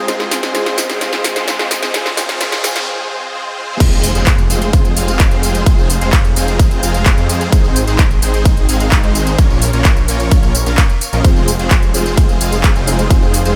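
Lightly reverberant and polished, with a digital ambience, this cut from a longer festival progressive house track feels powerful and anthemic over a straight 4/4 metre. It opens on a build-up in which a clear, boxy baby grand piano sits in the background beside a huge, airy supersaw chord riff coloured by ensemble chorus, cassette grain, delay and sidechain pumping. High above, a very quiet, lush supersaw pad holds sustained chords, while a thick, saturated detuned saw bass anchors the low end. A big-room dance kit plays a fill with a punchy snare, metallic hats, handclaps, tambourine and cymbals as a faint electronic riser leads into a short break. At 3.8 seconds the drop lands with an impact and a layered, tape-warmed electronic kick placed up front, and the piano returns at 11.2 seconds as the harmony cycles from Ab through Bbm back to Fm.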